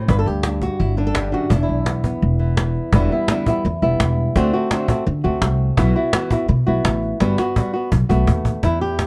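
A dark, fingerpicked flamenco guitar carries the melody in this intense, passionate flamenco excerpt in E minor at 168 BPM, its up-front tone touched by plate reverb. Pizzicato upright bass, thumpy with steel strings, and a woody cajon played with soft hands and faint snares enter at 0.1 seconds, and the cajon adds a drum fill from 7.2 to 8.6 seconds. The chords move from Em7 through D7, Bsus4 and Gmaj7 to B7 in a dark, warm production with light reverb.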